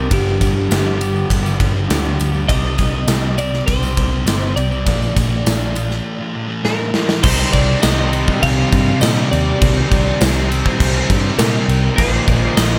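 A straight 4/4 pulse from a gated 80s drum kit drives this brooding, hazy rock excerpt in a shoegaze and dream pop vein, the kit up front with a stone-room snap, tight kick, and crash and ride cymbals, while a faint jingly tambourine sits behind it and a round, foam-muted vintage electric bass holds the low end. A clean, compressed, twangy twelve-string electric guitar carries the melody through tape echo over background riffs from a dark fuzz guitar washed in lush chorus and a crunchy overdriven guitar trailing reverse reverb. After a drum fill, a double-tracked, bright distorted guitar joins at 7.2 seconds as the chords move from G7, Cm and Bb7 to a closing Bbsus4, all in a small room ambience.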